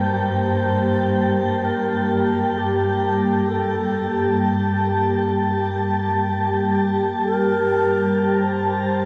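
A glassy FM pad with ensemble chorus sits up front, holding slow-blooming chords that move from G minor to Am/G at 7.2 seconds, while a breathy alto flute fades in with a soft melody steeped in diffuse delay and a lush bowed cello section sustains a low G with vibrato, all in free time beneath a long shimmer reverb in this reflective, serene ambient fragment cut from a longer piece.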